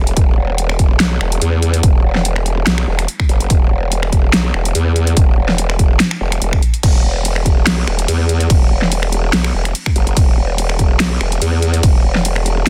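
A growling, formant-filtered wobble bass anchors this chaotic, aggressive heavy dubstep excerpt, its saturated, bright tone thickened with chorus and overdrive and sitting low, from E1 to E2, in a half-time, lightly swung groove. Up front beside it, a layered electronic drum kit carries crash cymbal, hi-hat, finger snaps and a huge overdriven snare, while a punchy, tape-warm kick enters at 0.2 s and stops at 11.9 s. The mix is dry, dense and heavily limited for a loud modern finish.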